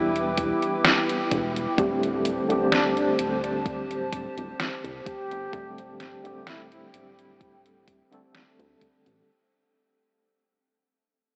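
A slow 64 BPM pulse in 4/4 with a light sixteenth-note swing is set by an overdriven, detuned 8-bit drum machine on hi-hat and snare and a thumpy, tape-warm electronic kick, anchoring this melancholic, woozy vaporwave excerpt as it moves from Em7 to D7sus4. A worn, slightly out-of-tune tine electric piano with tremolo, chorus, sampler grit and delay carries the accompaniment over a warbling, nostalgic pad with phaser and a dark, glossy chorused synth bass, while a mellow, close-miked flugelhorn with light vibrato and tape echo sings a brief melody from 2.7 to 6.9 seconds. The whole dreamy mix is soaked in a huge ambient reverb with an AM radio tint and fades out across its full length.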